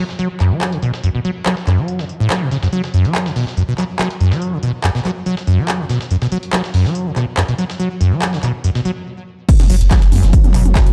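Straight 4/4 drive propels this dark, industrial and hypnotic peak-time techno, opening on a squelchy, resonant sawtooth acid bass riff up front with chorus, delay and sidechain pumping. A gritty, pitched-up sampler-style breakbeat kit of hi-hat, snare and tambourine joins almost at once, along with a tape-warm techno kit of smooth hats, handclaps, ride, crash and toms. After a brief stop, the drop at 9.5 seconds brings a punchy electronic kick drum and a deep, thick saturated sub bass, and a nasal, detuned swarming drone arrives in the background at 10.1 seconds, bathed in its own reverb.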